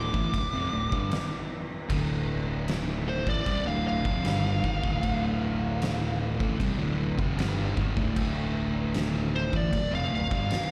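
Captured live through a venue's PA, this hypnotic, brooding stoner and doom metal excerpt sits on a single minor chord as a compressed fuzz lead guitar solos with slapback echo and digital delay over a double-tracked fuzz guitar riff, a growly fingered electric bass with overdrive, and an oversized low-tuned drum kit with a fat snare, punchy kick and dark cymbals in a pumping stone room.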